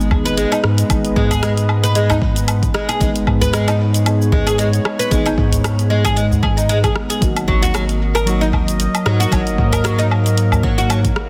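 A lightly swung sixteenth-note groove in 4/4 drives this organic downtempo cut from a longer piece, with a punchy, layered electronic kick entering at 0.1 s beneath a produced deep house kit of hi-hat, rim click, shaker and woodblock, its snare softly clipped. A deep, close and dry udu sits in the background, while a round, dark bass with a fast attack and sustained sine-like body pumps with the sidechain. Over this, a bright, woody oud plucks fretless double-stringed arpeggios through tape echo, lending the piece a mystical air. A soft, decaying chord stab sits low in the mix, colored by a filter sweep, moving notch, chorus, phaser, cassette tape and tape echo, as a smooth, warbling vintage pad with a wave-folded edge and chorus sustains the harmony, both parts pumping with the sidechain. The harmony rests on G#m before shifting to D#m/G# at 7.2 s, all set in light digital ambience and a dense, heavily limited modern master.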